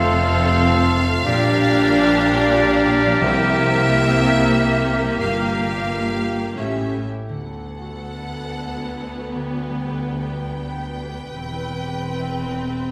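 Tender and uplifting, this cinematic film score for orchestra moves in a rubato 3/4 at 90 BPM, opening in F major before shifting to D mixolydian at 7.3 s, with a bright, focused violin section singing the melody over a lush, close viola section, a soft second violin line, ringing harp arpeggios, and a bass of smooth cellos and expressive double basses. Clarinet, a pure silver flute, oboe and a mellow French horn section add supporting lines and sustained chords until about 7 s, while a dry timpani touch sounds briefly at 3.2 s. The ensemble sits in a wet scoring-stage reverb, and the passage is cut from a longer piece.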